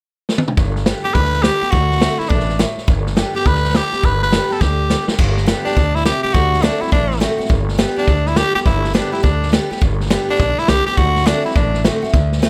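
A lightly reverberant sound frames this rowdy, rollicking rockabilly excerpt, cut from a longer piece and driving along at 208 BPM in 4/4 with a swung eighth-note feel in G major. A vintage drum kit with dark cymbals, a punchy kick and a medium-tuned snare opens with a fill at 0.3 seconds, then sits up front, adding another fill just before the second section begins at 5.2 seconds. Pizzicato upright bass with gut strings gives a woody, thumpy low end, while a bright, picked steel-string dreadnought guitar fills in the accompaniment over a simple G and D7 progression. Leading the way from 1.0 seconds is a raspy, gritty tenor saxophone played with vibrato and pushed to the front, its edgy tone doubled by a slapback echo. The horn drops out at 11.8 seconds, leaving drums, bass and guitar to carry the final moments.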